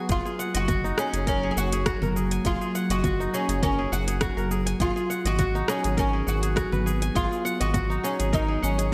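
An ethereal, airy pad and a bright, ringing kora open this hypnotic, earthy slice of organic downtempo, the pad holding sustained chords with ensemble chorus and sidechain pumping while the fingerpicked kora spins crisp arpeggios through a digital delay. Almost at once a woody, plectrum-plucked oud takes the melody up front, its double strings echoing through delay, over a round, dark analog bass that also pumps against the sidechain. The groove sits at 102 BPM in 4/4 with a light swing on the sixteenths, driven by an overdriven electronic kick with a deep punch and a deep house kit of cabasa, congas, metallic hi-hats and rim clicks treated with gated reverb. The harmony moves from F# to G#m7 at 4.8 seconds, and the kick drops out at 8.5 seconds just before this brief excerpt of a longer piece ends. A lush hall reverb and a bright 1980s-style digital sheen tie the acoustic strings and electronic layers together.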